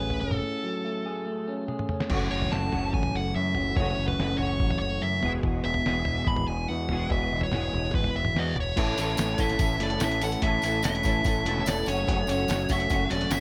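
A light reverb gives this indie rock excerpt a modest sense of space, with its upbeat yet wistful mood moving at 144 BPM in a straight 4/4 in A major. A dark, smooth lead guitar carries the melody up front from the start, its overdrive trailed by digital delay, while an electric guitar through a small old amp plays a slightly broken-up, picked riff bathed in spring reverb. Beneath them a growling fingered bass, bright and punchy with overdrive, holds the low end, and a lo-fi sampler-style drum kit with a thumpy kick, fat snare and muffled, tape-warm character comes in at 0.1 seconds, breaking briefly before a fill leads into the next passage. At 2.1 seconds a raw garage guitar joins with an overdriven, lo-fi riff colored by chorus and delay as the harmony moves from F#m7 to Eadd9. The music settles onto A at 8.8 seconds, where a jingly tambourine enters quietly in the background.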